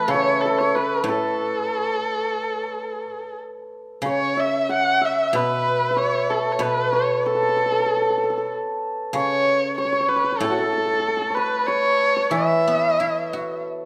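Flowing in a rubato 4/4, this pastoral, festive fragment of Chinese traditional chamber music places a dark, bowed erhu up front, singing the melody with vibrato, portamento and a soft attack, above a shimmering hammered dulcimer second line and a silvery guzheng accompaniment plucked with fingerpicks, all set in a moderate recital hall reverb, with a new section arriving at 4.0 seconds.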